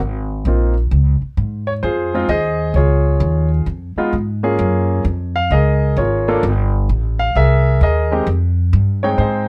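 A swung eighth-note feel at 130 BPM in 4/4 drives this short jazz piano trio excerpt, cut from a longer piece, with a smoky, cool mood. The upright bass starts at 0.0 s, its pizzicato gut strings woody and thumpy, sitting up front between G1 and Ab2. The concert grand piano enters at 0.5 s to carry the melody from Ab3 to G5, sounding intimate and polished, with long sustain, deep bass and audible action noise. The harmony moves from Abadd9 through Dbmaj7 and Gbmaj9 to Gsus2, then C7alt, arriving on Fm9 at 8.3 s. Close, detailed microphones and little reverb keep the piano present and both instruments near.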